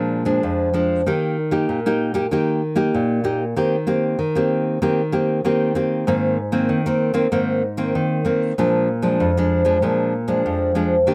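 Closely miked and finely detailed with a light touch of reverb, this short samba passage puts a solo nylon-string guitar up front for its full 11.1 seconds. The full-bodied, fingerpicked playing has a deep classical tone, with audible finger squeak as it moves through Bb7, Eb, Cm7/Eb, Abadd9 and back to Bb7. At a straight 96 BPM in 4/4, the mood is lively and sunny.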